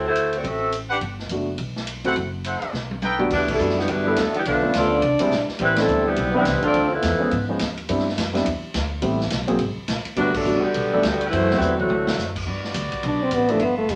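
Big band swing jazz at a brisk 210 BPM in 4/4, this swinging, energetic 14-second cut from a longer piece opens in G major before turning toward E minor at 3.3 s. An up-front, mellow saxophone section with vintage vibrato carries the melody in short phrases, while a woody pizzicato upright bass and a distant, roomy drum kit with a boomy kick and rolled-off top drive the groove throughout. A smooth-topped trumpet section punches out stabs early on, and a dark grand piano comps underneath, moving through rich extended chords such as Gmaj7, Am11 and altered dominants. From 3.3 s a trombone section sits in the background as a second line beneath the saxophones, with drum fills and full-band accents marking the phrases. Near the close a clear, tight saxophone section holds sustained chords as a forceful, close-miked solo trombone steps forward with the melody, all bathed in a wet studio reverb.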